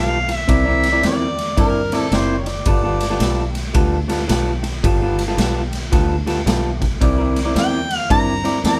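Gritty and laid-back, this electric blues shuffle excerpt swings at 110 BPM in G mixolydian, with an electric guitar through a small old amp playing a slightly broken-up, lo-fi riff over a dark, round fingered bass and a raw garage drum kit of punchy kick, ride cymbal and medium-tuned snare that enters at 0.3 seconds in a bright, pumping stone room. A mellow harmonica takes the jazz-style solo melody with tongue slaps and scooped notes, sounding distant and roomy, and it drops out at 3.6 seconds before returning at 7.6 seconds. The band plays live in one small room, moving through C9 and G9 chords.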